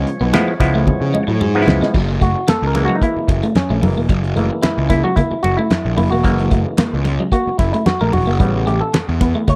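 Funk at 112 BPM in a straight 4/4, this energetic, gritty excerpt sits in F# mixolydian and is cut from a longer piece. A percussive tonewheel organ, lightly overdriven with key click and a subtle chorus, holds sustained chords in the background over a C#7#9 until 1.9 seconds, where a drum fill closes the opening section. From there the up-front auto-wah clav, stringy and clean, takes a solo of stabs over F#9, moving to A9 at 8.4 seconds. Underneath, a fuzzy, overdriven picked bass growls up front, while an electric guitar at the edge of break-up plays a compressed riff bathed in spring reverb. A cloth-damped drum kit with a fat snare, tight kick, dark cymbals, handclaps and hi-hat keeps things thuddy, joined by hard-hand congas with a bright, thin skin. The sound is a dry, close 1970s-style studio recording with little reverb overall.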